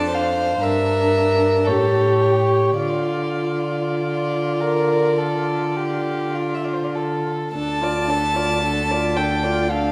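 Yearning and elegiac, this fragment of a slow, rubato romantic movement for string quartet in D minor, at 49-59 BPM, sets a floating, pure first violin melody over an intimate, airy second violin line, a dark, woody viola accompaniment with vibrato and a rich cello bass, all played sul tasto, the violins and cello with soft attacks, and bathed in the reverberant glow of a recital hall.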